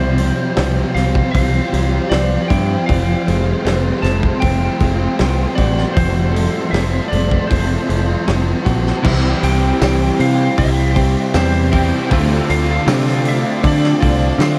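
A bright, punchy picked electric bass sits up front in this dreamy, blissful shoegaze and dream pop excerpt, moving at 78 BPM in a straight 4/4 in C major. Around it, a thick fuzz guitar and a compressed, direct-recorded clean guitar with reverse reverb play riffs, while a vintage, warbling organ-string ensemble holds mellow chords in the background. A slightly broken-up lead guitar, dressed in lush chorus and analog delay, carries the melody over a loose indie drum kit with a gritty, saturated sound and a rolled-off top. At 9.0 seconds the harmony moves from Csus4 and Fadd9 to C and Dm7 as a double-tracked overdriven guitar joins, followed at 9.8 seconds by a jingly, band-limited tambourine. The mix is soaked in a huge ambient reverb that lends the music a hazy, floating quality.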